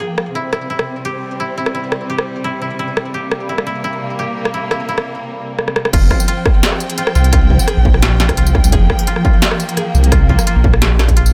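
A bowed studio string section holds sustained chords with vibrato and portamento under a filter sweep and sidechain pumping, while a dry, woody koto plays fingerpicked arpeggios through a digital delay, and an up-front industrial kit of clanging snare, smooth hats, rim clicks, tambourine and crash enters almost at once, setting a tense, dark half-time drum and bass mood. After a drum fill, the drop arrives at 5.9 seconds, bringing in a deep, rumbling detuned saw bass with a beating, sustained tone and a distorted electronic kick. The recording is quite dry and is cut from a longer piece.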